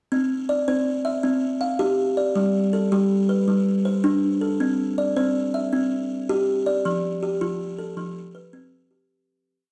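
Bathed in a wet recital-hall reverb, this short, rippling piece in a southern African traditional style features a solo buzzing kalimba, woody and hollow with up-front thumbnail plucks, cycling an interlocking mbira-style ostinato in 12/8 over C, G, C and F before fading out between 6.9 and 9.1 seconds.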